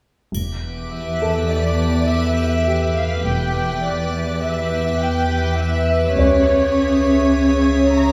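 This eerie, uneasy cut from a suspense film score in 5/4 opens at 0.3 s with veiled, con sordino cello and double bass sections bowing with vibrato beneath a brief, dry triangle, the harmony moving from Em to C#m. A deep, rumbling, warbling drone and a muted violin section carrying the melody soon join, along with a soft, felt-muted upright piano in the background and an icy, crystalline glass pad holding sustained chords through chorus. The double basses drop out at 6.7 s, and the ensemble is heard from further back in a wet stone room.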